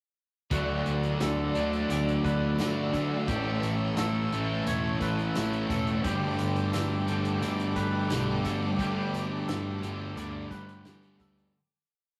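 A loose, small-room indie drum kit keeps a straight pop groove at 87 BPM in 4/4, with a punchy kick and driving eighth notes from a dark, foam-muted electric bass, while a jingly tambourine sits in the background. This short, complete shoegaze and dream pop piece feels hazy and dreamy. Two crunchy overdriven guitars ring out chords, one up front and one double-tracked and very quiet; a thick fuzz guitar strums dark chords with whammy-bar dips; a twangy clean guitar repeats a fingered arpeggio figure; and a brassy, detuned sawtooth pad with chorus and vibrato sustains over Dadd9, A and Gsus2, all in a rough rehearsal-room sound with wet reverb that fades out from 8.8 seconds to 11.5 seconds.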